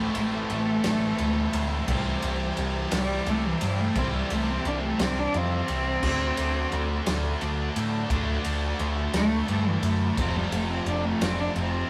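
A slow, straight 6/8 pulse at 58 dotted-quarter beats per minute drives this dark, angsty stretch of quiet-loud alternative rock, cut from a longer piece. A single dark cello carries the melody as a solo from the first moment, bowed sul tasto with vibrato and a soft attack, its smooth top captured close and intimate. Behind it, a pair of bright, overdriven electric guitars (one double-tracked) and a thick fuzz guitar pick out riffs in the background, while a growling, round electric bass with overdrive stands up front. A loose indie drum kit enters at 0.1 s with crash, ride, kick and snare, its fat snare, tight kick and rolled-off top set in a small room. A lush, vintage string machine holds very quiet sawtooth ensemble chords with a sub octave, chorus and a moving notch, over a progression of Am, C, D and F. Light reverb and a rough rehearsal-room sound give the whole thing a raw, unpolished edge.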